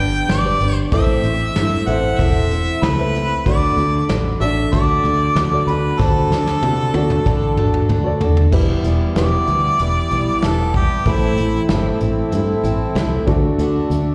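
A straight 4/4 pulse at 95 BPM carries this wistful, dusty folk rock and heartland rock excerpt in E minor, tuned slightly below standard pitch. The soft brush kit settles in with a smooth, dark tone, a punchy kick and a medium-tuned snare, and a drum fill arrives at 6.0 s. Underneath, the fingered electric bass sits up front with a round, foam-muted sound, while the full-bodied picked dreadnought acoustic guitar and a woody, slightly detuned upright piano, complete with audible action noise, fill out the accompaniment through slapback echo. The clear harmonica, distant and roomy yet up front with light vibrato, leads the melody through slapback and tape echo, moves into a solo as the harmonium's reedy, breathing chords enter in the background at 8.5 s, and falls silent at 11.7 s. The chords move from G and Am to D, then to Em, Am and D in the second section, all heard as a live gig through the venue's PA with small room ambience and recital hall reverb.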